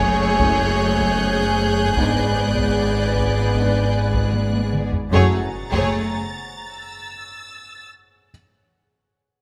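Cinematic suspense film score at 76 BPM, ominous and eerie, where lush bowed violin sections carry the melody, a second line and a high texture over rich violas, a background cello section and a dark double bass section, while an evolving, warbling wavetable pad with phaser and a metallic, inharmonic drone with chorus hover in the background, hard-stick taiko drums fill from 4.3 to 5.1 seconds, tight French horns and very quiet trombones hold chords from 0.4 seconds, and soft-mallet timpani sound at 5.1 seconds as the F#madd9 harmony returns in a close, detailed recording with light reverb.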